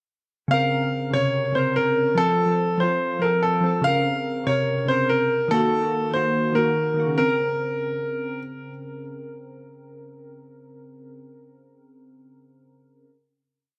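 Menacing and ominous, this short drill-style hip hop piece moves at 144 BPM with a half-time feel in Bb harmonic minor, built on a brief breakdown that cycles through Bbmadd9, F and Ebm before settling on a final Bbmadd9 chord at 7.2 seconds. A brilliant, intimate grand piano carries a looping melody with audible action noise, long sustain and a digital delay, repeated like a sampled loop until 8.4 seconds. Alongside, glassy digital keys with chorus, tremolo and a filter sweep play rhythmic, open-voiced chords that ring on to 13.0 seconds, all set in a moderate recital hall reverb.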